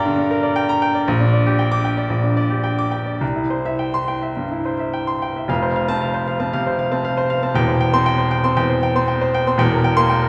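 A clear baby grand piano plays solo throughout, performing a virtuoso classical study with a sparkling, heroic mood in a rubato 4/4. The instrument sits up front with an intimate, natural tone, long sustain and audible action noise, and its range stretches from E1 to D6. The harmony begins on G minor and moves through G minor over B-flat to C, then a new passage from 5.5 seconds settles on F before turning to C over E and C7 over E. A wet recital hall reverb surrounds the piano, giving it the spacious ring of a church or concert hall. The recording is a short cut from a longer piece, ending at 10.3 seconds.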